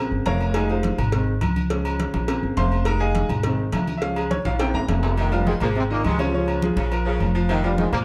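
A passionate, driving salsa in F minor at 207 BPM opens with a smooth, vintage grand piano solo up front, over a woody, thumpy pizzicato upright bass, thin-skinned congas played with soft hands in the background, a round, low-tuned cowbell, and ringing, distant timbales and agogo bells. After a drum fill at 4.5 seconds and the cowbell's exit, a bright trombone section takes the melody at 5.2 seconds with light vibrato and plate reverb, while a punchy, roomy saxophone section adds a second line. The production is dark, set in a moderate studio reverb.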